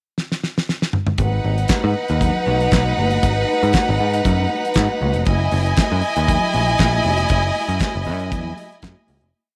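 This short disco piece runs at 118 BPM in G# minor, with a driving, danceable energy. It opens with a pickup bar in which a damped 70s drum kit plays a fill from 0.2 seconds. At 1.2 seconds the breakdown begins: the kit settles into a four-on-the-floor beat with open hi-hats on the off-beats, a fat snare layered with handclaps and a tight kick, all dry, airy and polished up front. A punchy, direct picked electric bass enters at the same moment with a syncopated line full of muted ghost notes and chromatic approach notes. Alongside it, a clear studio violin section holds swelling long notes with vibrato and a smooth top, touched by tape echo. High-tuned, ringing congas sit distant in the background with a slap on two and open tones on four, while the harmony moves from G#m7 to F#13 at 5.3 seconds before a fade-out closes the piece from 7.3 seconds.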